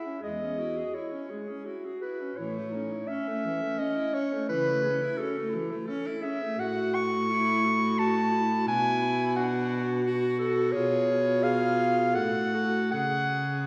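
In a rubato three-beat metre with uneven beats, this melancholic, solemn classical fragment for single-reed quartet sets an up-front, warm clarinet melody over a clear alto saxophone second line with light vibrato, a distant, roomy clarinet accompaniment and a mellow, soft-attacked baritone saxophone bass, the quartet heard from further back in a reverberant recital hall.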